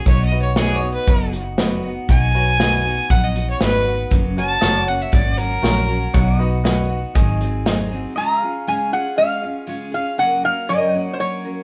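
A live-in-one-room sound with moderate studio reverb gives this brief honky-tonk and classic country cut, taken from a longer piece, a nostalgic, down-home feel at 119 BPM in a straight 4/4, opening in B major. Up front, a biting fiddle with light vibrato and an airy bow carries an intense solo over an acoustic kit with punchy kick, snare and hi-hat, while a dark, round, foam-muted vintage electric bass sits underneath. A bright picked steel-string acoustic guitar with audible finger squeak and a clear concert grand piano with deep bass fill in the accompaniment, and a clean, compressed pedal steel adds sustained chords with volume swells in the background. The fiddle drops out at 6.4 seconds, and the bass, piano and drums finish by 8.0 seconds. At 8.2 seconds the music shifts to Db major, where a metallic, nasal lap resonator guitar, played with fingerpicks and slide, takes the melody over the acoustic guitar and a warm pedal steel.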